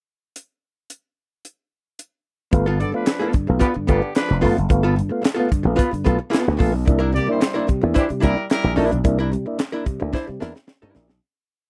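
Energetic and funky, this complete funk piece at 110 BPM in G mixolydian opens with a tight drum kit alone for a pickup bar, its high-tuned snare, tight kick, hi-hat and handclaps driving a heavy on-the-one beat. At 2.5 seconds the groove arrives over G9 and later C9. A growly, punchy slap bass with an envelope filter plays a syncopated riff anchored on the downbeat with muted ghost notes and chromatic approach notes, a dark, compressed hollow-body archtop guitar scratches out sixteenth-note rhythm, and a mellow, round tonewheel organ through a slow rotary speaker adds percussive two-handed stabs. A distant, roomy horn section with light vibrato plays short riffs until 8.7 seconds, and the dry, close 1970s-style recording fades out from 9.0 seconds, with a closing drum fill arriving at 10.1 seconds.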